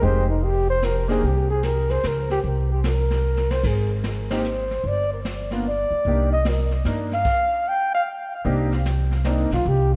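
Late-night and swinging, this small-group jazz piece in 3/4 at 150 BPM in C minor features a mellow, close-miked flugelhorn carrying the melody with light vibrato and a diffuse ambient delay, over a woody, thumpy pizzicato upright bass and a brushed drum kit with dark cymbals and a boomy kick; a concert grand piano with analog chorus accompanies, drops out at 1.2 seconds and returns at 4.3 seconds, and a drum fill at 3.2 seconds is followed by a band accent at 4.2 seconds, all soaked in a dreamy, lush hall reverb.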